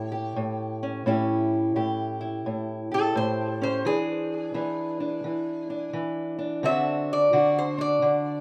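A metallic, nasal lap resonator guitar and a dark, boxy parlour steel-string acoustic guitar start together at 0.0 seconds in this short, rollicking, gritty slice of acoustic country blues, cut from a longer piece. The resonator carries the melody, played slide-style with a steel bar and fingerpicks, taking a solo across the whole 8.4-second span in a range from G#4 to E5. Beneath it, the fingerpicked acoustic guitar supplies the accompaniment from A2 up to G4, and both instruments sit up front in the mix. The tune moves at 86 BPM in 4/4 with a swung eighth-note feel in A mixolydian, passing from A7 to E7 at 3.8 seconds and on to D7 at 6.6 seconds. A wet studio reverb gives the rough home-demo sound a short tail of space.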